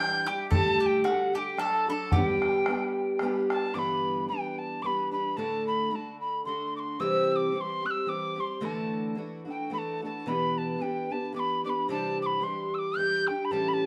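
Recorded live in one stone room with moderate reverb, this cheerful, rollicking Celtic waltz in G major at 110 BPM places an airy wooden whistle with chiff and vibrato up front over a shimmering, octave-doubled fingerpicked twelve-string guitar, while a bright bowl-back mandolin plays a second line until 3.2 s and a damped, tight bodhran sounds distant from 0.5 s to 3.6 s in this passage cut from a longer piece.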